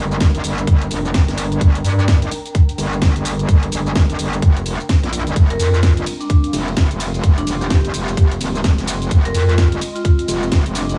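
Bouncy, swaggering bass house at 128 BPM with a swung 16th-note feel in G phrygian, where an aggressive, distorted metallic wobble bass with chorus and sidechain pumping drives up front alongside a tight electronic kick, while a garage kit of cracking snare, bright hats, ride and shaker crisps up the groove, a soft, breathy pad drifts in the background, and from 5.5 seconds, as the harmony moves from Gm to Fm, a ringing vibraphone with medium hard mallets and a slow vibrato enters trailing dub echo in this cut from a longer track.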